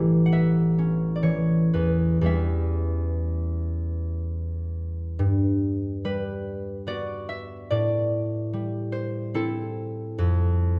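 Wistful and gentle, this short excerpt from a longer classical piece is a solo for concert harp in a flowing three-four time, moving with a free, rubato feel. The harp sits up front, warm and ringing as it is fingerpicked across a range from A1 to A5, its chords drifting from an opening A9 through Em6 to a brighter Gmaj7 at 5.2 seconds before settling on Fmaj7. A wet stone room reverb surrounds the instrument, lending it a lingering, resonant halo.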